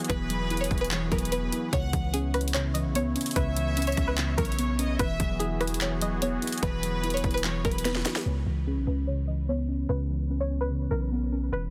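Overdriven trap drums sit up front in this dark, hard-hitting hip hop excerpt, with a hard-clipped kick, a sharp snare, bright hats, handclaps and rim clicks in a half-time feel. A deep, boomy 808-style bass with a sine-like tone and a fast, decaying attack shares the front of the mix. Above them, a twangy, string-like resonator pluck carries the melody through chorus, delay and a low-pass filter, with a moving notch colouring its tone. Muted, felt-like synth keys add soft, warbling vintage accompaniment, while a detuned, resonant pad slowly swells and evolves. A clear studio violin section adds a biting, lightly vibrato-touched second line. The chords move between Eadd9 and C#m7. A drum fill at 7.9 seconds closes the first section. At 8.3 seconds the drums, pad and violins have dropped away, leaving the pluck, keys and bass to continue. The mix is dry, dense and heavily limited.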